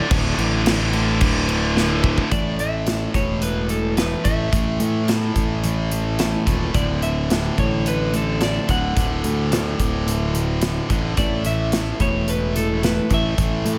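Quiet-loud alternative rock with a bittersweet, anthemic mood, this short cut from a longer piece moves through the chords D5, A5, D and Asus2 in a straight 4/4. A dark, clean electric guitar carries the melody throughout, its picked lines given a slapback echo, while a tight, bright distorted guitar holds down a low riff. For the opening 2.3 seconds a scooped, high-gain guitar adds heavy riffing of its own before dropping out. A growly fuzz bass, fingered and overdriven, sits up front with a punchy edge, and a big acoustic rock kit in a studio room pairs a punchy kick with a medium-tuned snare, hi-hat and crash, rolling through a fill at 1.8 seconds. From 2.3 seconds a very quiet, compressed twelve-string electric guitar adds twangy arpeggios beneath the melody, all set in a light reverb.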